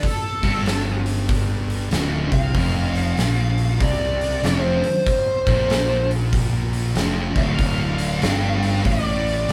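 A band playing live in one large studio room, with moderate reverb, delivers this heavy, hypnotic stoner and doom metal excerpt in a swung 4/4. An oversized, low-tuned acoustic drum kit sits up front with a boomy kick, fat snare and hi-hat, gritty and pumping with the room, while a dark, compressed fuzz lead guitar carries the melody through wah and distortion from the start. At 0.4 seconds two thick fuzz guitars enter in the background playing riffs, joined by a bright, growly fingered bass with overdrive and tube saturation, over chords moving from D5 to F5 and on to Dm.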